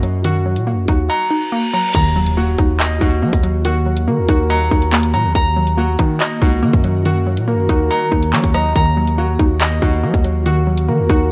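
Drill hip hop in Eb minor at 141 BPM with a half-time feel, dark and ominous, where a hollow, bouncy square pluck and a clean, fingered electric guitar playing arpeggios sit over a saturated, aggressive 808-style bass and an up-front electronic drum kit of hard-clipped kick, hi-hat, handclaps, rim click and crash, which drops out from 1.1 to 1.9 seconds as a reverse cymbal rises into an impact, after which an ethereal, airy pad of sustained chords settles in the background and a round, octave-layered synth lead with vibrato adds a second line, briefly at 4.1 seconds and again from 7.5 seconds, all in light reverb.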